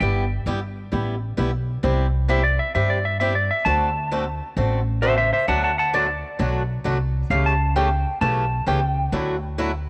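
A 65% swing on the eighths drives this cheerful, playful country fragment at 132 BPM in 4/4, where a clean, scooped lap steel played with fingerpicks carries a second line up front beneath an electric slide guitar solo, over a dark, boxy picked acoustic guitar with audible finger squeak and a woody, thumpy pizzicato upright bass, all moving from Em/G through C and D7 to a closing Dadd9 at 9.1 seconds in light studio reverb.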